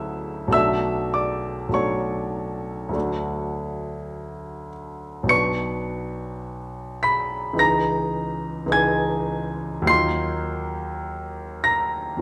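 An intimate, polished concert grand piano sits up front with deep bass and audible action noise, playing a luminous, serene impressionist solo at a slow, rubato 51 BPM in 4/4, spanning B1 to C#7 through lush chords that open on Dmaj9 and drift toward Ebmadd9 by 9.9 seconds, all bathed in a wet recital hall reverb across this 12.2-second excerpt from a longer piece.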